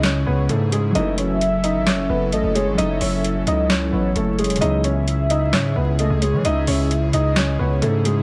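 Vinyl crackle and a light reverb with studio ambience frame this brooding, melancholic half-time trap excerpt in C# minor at 131 BPM, moving from C#m to F#m7 and back. A soft, felt-muted upright piano carries the melody with audible action noise, while a velvety, chorused synth lead with vibrato and tape echo adds a second line, and a mellow fingerpicked concert harp and a breathy, warbling pad sit beneath. A distorted, saturated 808-style bass and a booming analog drum machine with crisp snare, metallic hats and handclaps sit up front, and a dark brass ensemble lands short stabs at 0.9 and 4.6 seconds.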